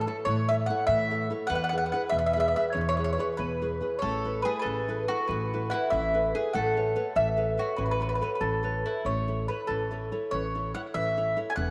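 Wistful and romantic, this excerpt from an Italian folk serenade sways in a rubato 6/8 at 96 BPM in A major, with a round, double-strung mandolin up front carrying the melody through a slapback echo while a second mandolin plays a supporting line until 9.0 seconds. Beneath them, a full-bodied nylon-string guitar fingerpicks a classical-style accompaniment and a woody, growly upright bass is plucked low, moving from A through E, Asus2 and Aadd9 before returning to A at 9.1 seconds. A lush plate reverb with a long tail surrounds the ensemble.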